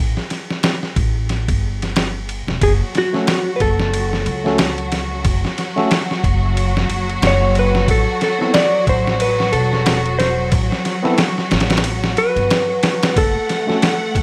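A dark, clean lap steel guitar carries the melody from 2.6 s, its fingerpicked slide lines soaked in tape echo and plate reverb, above a distant, lush bowed string section holding sustained chords. This hypnotic, cinematic trip hop piece opens on a woody pizzicato upright bass with tube saturation, joined by an up-front, muffled, pitched-down sampler-style drum kit with a thumpy kick, while a worn, slightly out-of-tune tine electric piano adds lightly overdriven accompaniment with tremolo. The kick drops out from 11.8 s to 13.2 s, and the rough home-demo mix sits in a moderate room reverb until the fragment breaks off.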